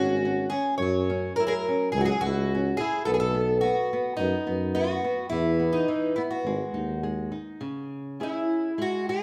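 A fingerpicked twelve-string acoustic guitar, a flamenco guitar and a mellow tuba all sound together from the start of this short extract from a longer fado-style ballad, which moves in a free, rubato 4/4 with a longing, mournful mood. The twelve-string carries the melody up front, its octave-doubled strings shimmering over a boxy, ladder-braced body, with an audible finger squeak adding intimacy. Beneath it, the flamenco guitar plays fingerpicked accompaniment in a lower register, its fresh strings sounding warm. The tuba supplies the bass in a jazz style, its smooth top and gentle vibrato rounding out the low end until it drops away at 7.3 seconds. A new section begins at 7.6 seconds, where the two guitars continue alone to the close at 9.2 seconds, all set in a light reverb.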